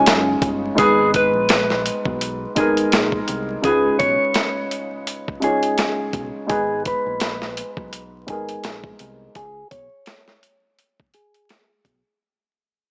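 Moody and reflective, this boom-bap hip-hop excerpt sits at 84 BPM in G# dorian with a swung 16th feel, moving between C#7 and G#madd9. A clean, fingered electric guitar carries the melody over a woody, intimate upright piano with audible action noise, while a round, punchy fingered bass and a gritty, compressed, up-front sampler-style drum kit with a thumpy kick and medium-tuned snare hold the groove. Vinyl crackle, a small-speaker tone and light reverb color the sound; a filter sweep and fade-out run from 0.8 seconds, and the piano drops out at 9.4 seconds for a closing break.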